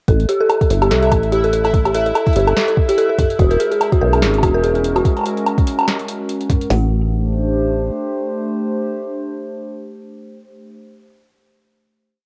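IDM at 145 BPM in A phrygian, this short, whole piece has a cerebral, eerie mood, its 4/4 groove carrying a light swing on the sixteenths and the faint haze of a home cassette recording in a lightly reverberant space. A dark, detuned FM synth bell plays an inharmonic, mellow arpeggio as a repeating five-step loop that drifts against the bar, while a deep acid bass, rubbery and resonant with a sawtooth filter pluck, plays long gliding notes underneath. Two overdriven drum parts run together: an up-front glitchy kit with a soft kick, tiny snare and clicky hats in a broken pattern, and a booming analog drum machine, re-recorded in a small room, whose crisp snare, metallic hats, low tom and high woodblock shape an ever-changing, glitched beat. From 0.6 s a faint pulsing, tempo-synced texture holds a high note with chorus and its own reverb, pumping against the groove until 5.1 s. A hollow, flute-like pad with a slow attack enters at 3.4 s on E, shifting slowly, and after the drums fall away at 6.7 s it sustains a final Am7 chord to the close.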